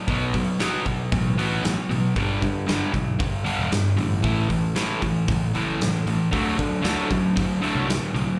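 Brooding and angsty, this short cut from a longer quiet-loud alternative rock piece moves in a straight 4/4 as an up-front, double-tracked fuzz guitar drives a distorted, compressed riff through B5, G5, A5 and D. Underneath, a growly overdriven picked electric bass and a huge arena drum kit with a punchy kick, medium-tuned snare and hi-hat fill out the sound from 0.1 seconds. The whole thing has the feel of a live gig heard through a venue's PA, with small-room club reverb around it.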